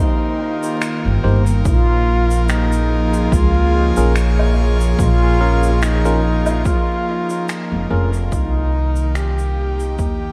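Steeped in vinyl crackle and small-room ambience, this deep, hazy ambient dub fragment at 72 BPM in Bb dorian sets a vibrato-laden solo trombone melody with dub echo over a breathy, chorused pad, while a woody, growly pizzicato upright bass sits up front from 1.1 seconds, an overdriven, punchy electronic kick joins at 1.7 seconds, shaker, finger snaps and woodblock carry their own dub echo, and very quiet, clean tine electric piano stabs sparkle until 8.1 seconds as the music fades out from 6.1 seconds.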